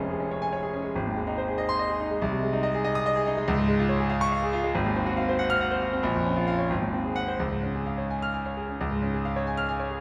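Heroic and sparkling, this short passage from a classical virtuoso piano study is cut from a longer piece and unfolds in 6/8 with a free, rubato feel. A solo concert grand carries the whole ten seconds, its tone natural and up front, with a deep bass reaching down to F1 while the upper register extends as high as F6. The harmony circles through bright, settled chords, moving through a minor colour and a seventh chord before resolving home around 7.4 seconds. Near 8.8 seconds the music turns toward a new section just as the clip ends. The instrument sits in a resonant church or concert hall, where a generous reverb blooms around each phrase.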